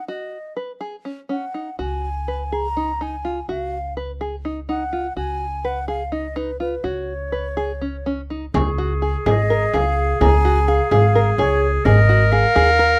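Contemporary instrumental chamber music in 7/8 at 250 BPM (eighths) in Db mixolydian, shimmering and restless in this short cut from a longer piece, sets an airy, straight-toned baroque flute melody over plunky, fingerpicked open-back banjo arpeggios, with a woody pizzicato upright bass entering at 1.8 seconds and, from 8.5 seconds, a bright clarinet second line joined by a deep, saturated frame drum and a delicate, slightly out-of-tune, bell-like celesta in the background, the whole caught by close, detailed microphones in a dry room.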